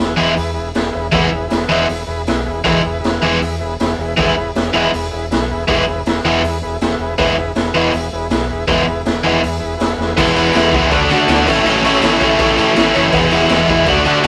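This rough rehearsal-room recording has a moderate studio reverb and a raw, rowdy energy, cut from a longer garage rock piece in E mixolydian at 160 BPM in a straight 4/4. A biting, bright overdriven guitar sits up front and double-tracked, picking a riff from about 0.2 seconds, while a buzzy vintage combo organ with heavy vibrato holds sustained chords from the start. Underneath, a growling fingered electric bass with overdrive and tube saturation gives a punchy low end. A raw garage drum kit with a medium-tuned snare, punchy kick and rolled-off top drives the beat on kick, snare, hi-hat and crash, joined by a very quiet, jingly tambourine. A drum fill at 10.0 seconds leads into a new section where the chords move from E to D, then A, and back to E at 13.1 seconds.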